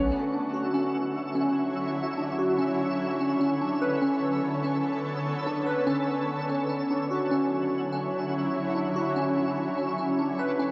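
A hazy, lo-fi wash with a light digital ambience and a dulled cassette top end opens this short, ethereal hip hop fragment, moving in a half-time feel at 146 BPM as the harmony alternates between Dmaj9 and Bm9. Up front, a shimmering, detuned ambient pad holds sustained chords with a slow attack and long release, while glassy digital keys play airy, decaying arpeggios through chorus and analog delay. Beneath them, a faint twinkling granular texture adds a sparkling, FM-tinged layer throughout.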